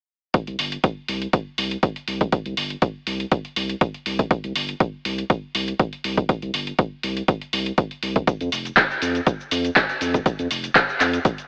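This acid house excerpt has a trippy, hypnotic mood, set in a steady 4/4 groove with a light swing on the sixteenths. An up-front electronic kick drum with an analog punch anchors the beat from 0.3 seconds, alongside a punchy analog drum machine supplying handclaps, hi-hat and shaker. Beneath them, a deep, thick sine sub bass sits between F1 and F2, saturated, with a fast attack and sustained notes that pump through sidechain compression. The bass arrives at 0.5 seconds and stays close and prominent throughout. Light reverb and a narrow, lo-fi AM radio character colour the whole mix, giving the short excerpt a hazy, broadcast-like feel until it cuts off at 11.5 seconds.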